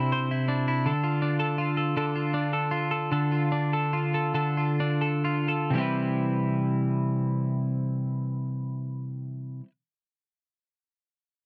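A dry, close 1970s-style studio sound with light reverb frames a tender, romantic pop excerpt in 6/8, where a bright, twangy, compressed twelve-string electric guitar plays alone up front from 0.0 to 9.7 seconds, moving from Cadd9 through Dm to Cmaj7 at 5.7 seconds after slowing down in its opening phrase.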